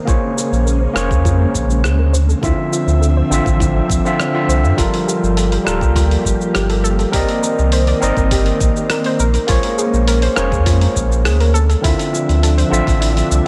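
A deep, round sub bass sits up front in this smooth, wistful sunset chillout excerpt, joined by a barky, overdriven tine electric piano through a combo amp, silky warbling string-machine chords with ensemble chorus, a mellow background pluck of arpeggios with delay and a filter sweep, a gritty, tape-warm sampler-style kit of cabasa, hi-hat and rim click, and a layered electronic kick that drops out at 13.0 s, all in a light reverb.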